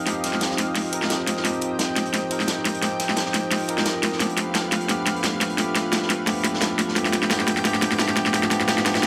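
A cracking, overdriven drum and bass kit sits up front, its bright hats and snare driving this uplifting, dreamy slice of liquid drum and bass at 174 BPM in Eb lydian, with a light swing on the sixteenths. Beneath it, a second breakbeat kit of hi-hat and snare adds a dark, gritty, saturated layer with a rolled-off top, tucked into the background of a small room. A bell-like tine electric piano plays clean, direct accompaniment through dub echo, while a lush, detuned unison pad holds soft-attack sustained chords, thickened by chorus and an airy noise layer. A vibraphone struck with hard mallets rings out metallic arpeggios from the back of a boxy space, also trailing dub echo. The whole short passage works as a build-up with a running drum fill, the harmony moving from Eb69 to G9 at 4.2 seconds within light small-room reverb.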